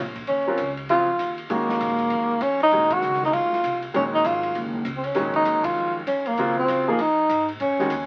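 A breathy tenor saxophone sits up front and carries the melody, its whispered, mellow tone marked by vibrato, soft attacks and scooped notes that give this short cut from a longer modal jazz piece an intense, searching mood. Beneath it, a bright upright piano voices the opening Ebm9 harmony with a brilliant, woody sound, long sustain and audible action noise. A pizzicato upright bass with steel strings adds a woody low end, while an open jazz drum kit swings on hi-hat, ride, snare and a boomy kick, its cymbals dark and smooth. The band hits accents together at 2.9 and 5.6 seconds. The whole performance comes through a moderate small-room reverb and the crackle of a very old 78 rpm record, which gives it an aged, intimate feel.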